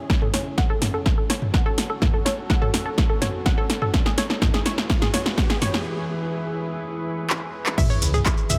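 Built on a straight 4/4 pulse, this short excerpt of dark, dramatic melodic techno opens in the middle of a build-up, with a punchy, up-front electronic kick and an overdriven deep house kit of punchy snare, metallic hats, handclaps, toms and crash cymbal, its drum fills running through the first 5.9 seconds. A deep, moody pad of evolving detuned sawtooth and sine layers holds sustained chords with a slow attack, chorus and built-in reverb, pumping against the kick as the harmony moves from F#m to E. A round analog pluck spins arpeggios with chorus and delay while a filter sweep moves across it through the build, and a very quiet riser and sub drop sit underneath from 2.0 seconds. After a break and a final fill, an impact lands at 7.8 seconds on C#m, bringing in a grainy acoustic shekere and, at 8.0 seconds, a rumbling, beating detuned saw bass that pumps with the sidechain. The mix sits in light digital ambience, with the kick in a small room and the kit in a large one.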